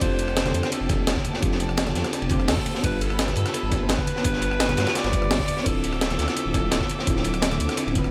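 A studio ambience surrounds this short, soulful and melancholic excerpt of liquid drum and bass at 170 BPM in a straight 4/4. A raspy, growling alto saxophone carries the melody in a jazz style with vibrato, set back in the room with digital delay, while a round, full-bodied FM electric piano supplies soft accompaniment through chorus and delay. High above, a lush, biting string section holds sustained chords in the background, its bowed ensemble pumping against the sidechain. Underneath, a menacing detuned saw bass evolves with a filter swell and a saturated edge. The drums layer a gritty, pitched-up breakbeat kit and a thumpy electronic kick, both tape-warm, with a raw garage kit with dark cymbals and a rolled-off top, while distant congas join at 0.5 seconds. The harmony moves from F6/9 to G7 at 2.8 seconds and settles on Dm9 at 5.7 seconds.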